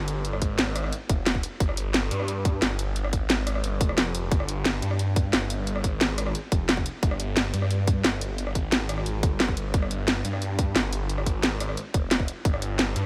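A thick, swirling detuned saw bass, phased and overdriven, opens this dark, mechanical drum and bass excerpt at 177 BPM in 4/4, tuned to A4 = 439 Hz. A layered electronic drum kit arrives at once, with a cracking snare, rim clicks and bright hi-hats that carry a small-room sound, joined from 0.4 seconds by an overdriven, up-front kick. The kick drops out briefly between 4.0 and 4.3 seconds, and a light reverb sits over the mix.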